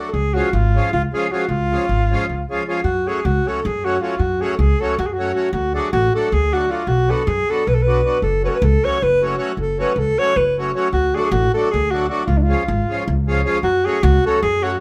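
Balkan folk in the manner of a wedding band, this short cut from a longer piece moves at a brisk 311 BPM in 7/8, with a restless, bittersweet mood. A mellow alto saxophone carries the melody up front with vibrato and a classical poise, its tone framed by plate reverb. Beneath it, a reedy, full accordion supplies accompaniment throughout, while a woody upright bass with steel strings, plucked pizzicato, sits up front and anchors the low end. The harmony circles through C#, F#m, D and Bm, settling back on F#m at 13.6 seconds. The whole band sounds heard from further back in a small, wet room.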